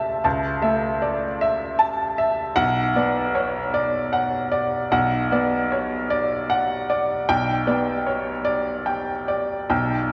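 A rubato 3/4 lilt at around 76 BPM gives this neoclassical minimalist piano piece a loose, unhurried sway, set in B minor with a wistful, melancholic mood. A clear baby grand piano plays solo from start to finish across a range from B1 to A5. Its tone is natural and up front, with a short sustain, and a diffuse ambient delay trails behind it. The harmony moves from A/C# to Bm at 2.6 seconds and settles on G/B at 7.3 seconds. The dreamy mix is soaked in a lush hall reverb with a 2.6-second decay, blended with a small room reverb and a cassette tape character. This brief passage is cut from a longer piece.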